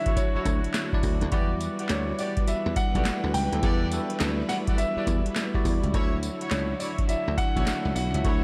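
A dark, mellow baby grand carries the melody over bell-like tine electric piano accompaniment from the first moment of this flirty, upbeat new jack swing cut, both touched with slapback echo, while a lush string section sustains chords in the background. A booming analog drum machine with overdrive, a deep kick, crisp snare, metallic hats, handclaps and tambourine sets a swung R&B groove, joined at 0.4 seconds by a punchy, dry thumbed slap bass up front, as a distant, clear horn section adds tight stabs with slapback echo and digital delay. The harmony moves between Dmaj9 and Em9, and concert hall reverb gives the mix a big arena sound.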